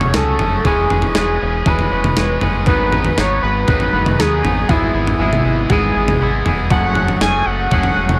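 Wistful and jangly, this short indie rock passage moves at 119 BPM in E major, cut from a longer piece and set in light reverb. A bold, retro octave-doubled lead carries the melody with a wave-folded sawtooth-and-sine tone, sustained notes, chorus, vibrato and plate reverb, over a bright, clean twangy electric guitar riff and a raw garage guitar riff with overdrive and subtle chorus. Beneath them, a growling fingered electric bass adds punchy, overdriven low end while a crisp 8-bit drum machine supplies a thumpy kick, fat snare and toms with a small-room character, every part playing through the full 8.2 seconds.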